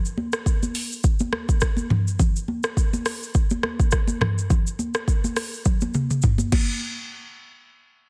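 An afrobeats groove at 104 BPM in 4/4, sultry and mellow, with a 16th-note swing that gives it a relaxed sway. An overdriven, electronic afro-pop drum kit sits up front, with a deep kick, metallic hi-hats, rim clicks, shaker, toms and crash cymbal, and it closes with a fill from 5.7 to 6.8 seconds. Close, dry, high-tuned congas with a thick-skinned, hard-handed attack sit further back, all within a digital ambience and a dense, heavily limited modern master.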